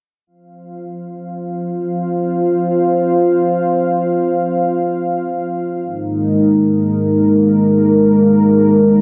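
A dark analog pad opens the recording at 0.3 seconds, holding sustained chords in free time with an aggressive, futuristic mood drawn from drum and bass. The pad is the only part, sitting up front and spanning Ab3 to F5, its detuned sawtooth and triangle tones thickened by a sub octave and a chorus effect. A slow attack and long release give its moody, deep body a sense of suspension as the chords sustain, with notable moments at F5 at the start and Ab5 at 5.8 seconds. A moderate, lush hall reverb surrounds it, lending the sound a spacious tail. The passage, cut from a longer piece, runs until 9.0 seconds.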